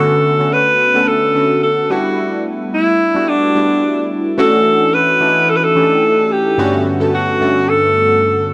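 Late-night and deep, this short amapiano cut at 109 BPM in a straight 4/4 sets a breathy alto saxophone melody with light vibrato, distant and roomy under a digital delay, over round, detuned sawtooth analog keys with a filter sweep, chorus and phaser, moving through Bm7 and A7sus4 before a drop at 4.4 seconds shifts to Dmaj9 and Gmaj9#11, all in a small room with light reverb.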